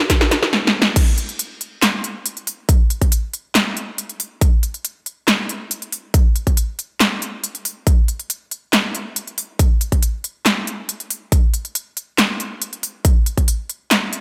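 Dubstep at 139 BPM in a half-time feel, heavy and menacing, this excerpt opens with a quick drum fill before the drop hits at 1.0 seconds and carries through to 14.2 seconds. A big-room dance kit sits up front with a punchy, overdriven snare, crisp hi-hats, handclaps and crash cymbal, re-recorded in a large room. Beneath it, a layered electronic kick punches with gritty overdrive, re-recorded in a small room, until 13.5 seconds, all under light reverb.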